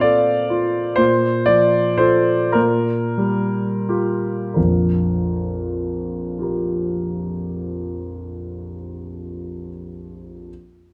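A clear concert grand piano opens on a Bbmaj9 chord in this dreamy, hazy fragment of impressionist classical solo piano in B-flat major, drifting in a rubato 6/8 at 26-44 BPM and slowing through the first 4.6 seconds, passing a Bb5 chord at 2.5 seconds, its open, up-front tone ranging from deep bass to a long sustain, captured by close, detailed microphones within a moderate recital hall reverb.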